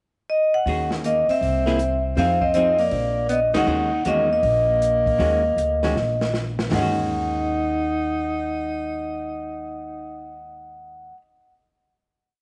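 A vibraphone with medium hard mallets opens this short, cool, late-night swing piece with a pickup, its metallic, ringing tone up front with the motor off as it spins a free melody. At 0.7 s the band enters: an amplified archtop guitar comps in syncopated three- and four-note chord shapes with a dark, clean hollow-body sound, an upright bass plays a woody pizzicato two-feel, and a small-room drum kit with a rolled-off top and boomy kick keeps time on the hi-hat, marking a band accent at 3.5 s and a fill before dropping out at 6.8 s. From 1.0 s a warm alto saxophone with light vibrato, soft attack and scooped notes adds a harmony line mostly in thirds, touched with tape echo, before the group settles onto a final chord under light reverb.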